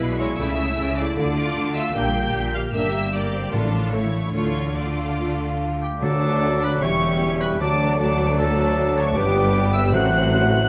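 A stormy, restless passage from a longer romantic orchestral movement opens in D minor at a fast 152 BPM with flexible rubato, the full strings sounding together: distant, intense violins carry the high melody over a smooth-topped second violin line, clear violas in the background, a lush, even cello section and an expressive double bass section anchoring the bass. A ringing concert harp threads arpeggios through the texture from the start, and a mellow French horn section slips in at 0.4 seconds with sustained chords in the background. Very quiet timpani struck with hard mallets add dry, articulate accents from 3.5 seconds as the harmony moves through darkly shifting minor chords. Around 6.0 seconds the music turns to D major and the winds join: a roomy solo oboe just before, then an airy, close-miked flute and a distant clarinet on second lines, a light-vibrato bassoon in the accompaniment, and a very quiet, vintage-toned tuba doubling the bass. 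The whole orchestra sits in a moderate scoring-stage reverb that gives the sound depth while keeping the lines distinct.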